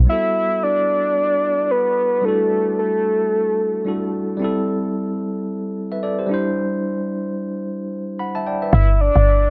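A brief, punchy hit of woody log drum bass opens this soulful amapiano excerpt, then drops away as a tine electric piano and a soft, octave-layered synth lead enter at 0.1 seconds. The electric piano carries the harmony through rich extended chords, moving from Gmaj13 through Em11/G and Am7 to D9sus4, with a clean, speaker-coloured tone set up front. Alongside it, the synth lead sings a sustained melody with a round, dark body built from detuned triangle, sawtooth and sine layers with a sub octave, shimmering with chorus, vibrato and digital delay before it falls silent at 4.1 seconds. A light swing in the 16th-note feel and a light reverb give the groove an easy, unhurried lift. At 8.7 seconds the mellow, decaying log drum and the lead return together over a bare G5 chord as the piece is cut off.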